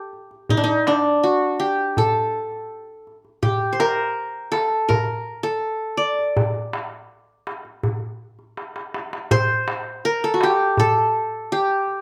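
Hypnotic and melancholic, this short passage from a longer Arabic maqam ensemble piece sets a bright, fingerpicked qanun with triple strings and a slapback echo up front over a crisp metal-shell darbuka played with soft hands, all captured dry in the open air, with a darbuka fill at 8.6 seconds leading into a new section at 9.3 seconds.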